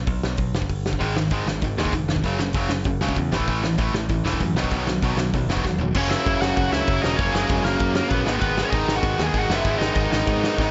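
This energetic, rebellious punk rock excerpt, cut from a longer piece, opens with a punchy, direct picked electric bass at 0.0 seconds, joined almost immediately by a loose indie drum kit in a studio room, distant and roomy yet up front, with a fat snare, a punchy kick and dark cymbals. The tempo is a driving 194 BPM in a straight 4/4. At 1.0 seconds two picked electric guitars take up the riff: one biting and overdriven, the other tight and distorted, sitting further back. The chords move through B5, G#5, F#5 and A5 before a drum fill carries the music into a new section at 6.0 seconds, where a high-gain, distorted lead guitar steps up front with the melody as the harmony turns to F# and G#m. A light reverb surrounds the mix, and the top end stays rounded and free of sizzle.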